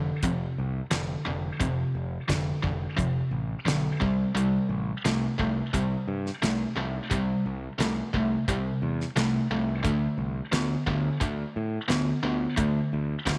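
Two overdriven guitars, one biting and one bright and up front, open this driving, gritty classic rock excerpt at 88 BPM alongside a growling fingered bass, with a dry, damped 70s drum kit joining at 0.2 seconds with its fat snare and tight kick as the riff moves through F5, C5 and D5 in light reverb and studio ambience.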